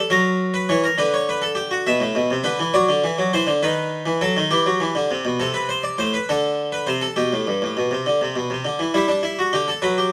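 A lightly reverberant room frames a brilliant, plucked Italian-style harpsichord, its full tone from three sets of strings placed up front. This baroque-style two-part invention moves in a straight 6/8 with a driving yet solemn character, the solo instrument spanning low bass to upper treble. Cut from a longer piece, the passage turns to new harmonic ground at 5.4 s and settles into a final phrase from 8.9 s.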